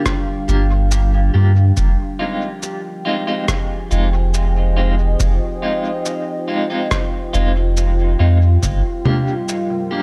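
A round, up-front sub bass with tube saturation anchors this meditative, hazy ambient dub fragment at 70 BPM in F dorian, where a dark, warbling pad of detuned sawtooth chords with chorus and 12-bit sampler grit holds a Gm7 that shifts to Fm7 at 1.8 seconds, an analog deep kick thumps beneath muffled, pitched-down rim click, cabasa and congas steeped in dub echo, and a bright, twangy clean electric guitar adds tremolo-laden stabs from 0.5 seconds in an echo-heavy, nearly dry mix.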